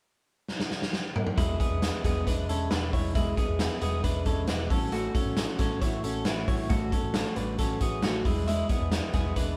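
In a straight 4/4 feel, this youthful, breezy slice of jangly indie pop opens with a gritty, saturated garage drum fill at 0.5 seconds, the kit sitting up front with a tight kick, a medium-tuned snare and a rolled-off top. At 1.4 seconds the band arrives together over E7 and A6: a bright, twangy twelve-string electric guitar picks clean, compressed arpeggios, a fingered electric guitar through a small old amp adds slightly broken-up, lo-fi accompaniment, and a vintage foam-muted bass gives round, punchy low notes. The group sounds like it is playing live in one room with light reverb, in a short cut from a longer piece.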